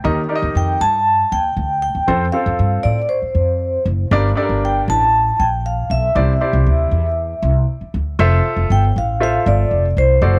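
The recording sounds dry, close and up front, with little reverb around the instruments. This is an uplifting, danceable stretch of uptempo 1960s-style soul at 118 BPM in a straight 4/4, set in F major and cut from a longer piece. A pizzicato upright bass with steel strings anchors the low end with a woody, growly, thumpy tone, while a warm baby grand piano supplies natural-sounding accompaniment with a short sustain. From 0.6 s, a vibraphone played with medium mallets carries the melody, its metallic, ringing notes shimmering with a slow motor vibrato. The harmony moves through Eb, F, Gm and Cadd9 before a new section opens at 8.2 s on an Fmaj7.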